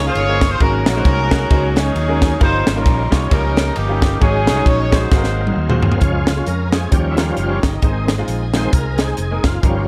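A polished studio room gives this short, uplifting gospel passage an airy sheen, with reverb lending the whole band a roomy glow. A warm, distant horn section carries the swung melody up front, touched with a slapback echo, while a brilliant, woody upright piano and a shouting, lightly overdriven tonewheel organ fill in behind, the organ turning through a slow rotary speaker with chorus vibrato and audible key click. A round, dark fingered electric bass anchors the low end, and a crisp fusion drum kit, with its high-tuned snare, tight kick and dark cymbals, sits prominently in the mix. A drum fill arrives at 5.1 seconds, and the horns drop out partway through it, at 5.8 seconds. At 6.0 seconds the organ takes a hopeful solo over a lush, smooth bowed string section that enters softly in the background with gentle vibrato. The harmony settles from rich suspended and extended chords into a bright, resolving major close.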